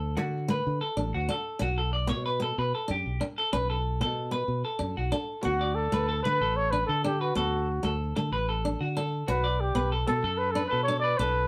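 Clean, hollow-bodied electric guitar arpeggios and a round, up-front fingered electric bass open this carefree, joyful highlife piece in D major at 125 BPM in 12/8. A bright, boxy picked steel-string acoustic guitar joins almost at once, and from 5.4 seconds a dark, breathy trumpet with jazz-style vibrato and a soft, whispered attack carries the intimate solo melody, with the band captured playing live together in a moderately ambient studio room.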